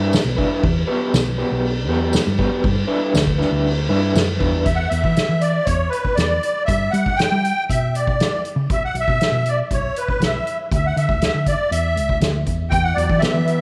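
A reedy, shimmering musette accordion with slapback echo takes the melody from 4.6 s in this hypnotic, trippy psychedelic rock excerpt at 119 BPM, after a slightly broken-up, lo-fi guitar riff with tremolo opens the track and returns at 12.7 s, all over a round hollow-body bass, a distant, roomy soft-mallet drum kit with dark cymbals and a punchy kick, a jingly tambourine in the background early on, and a moderate plate reverb.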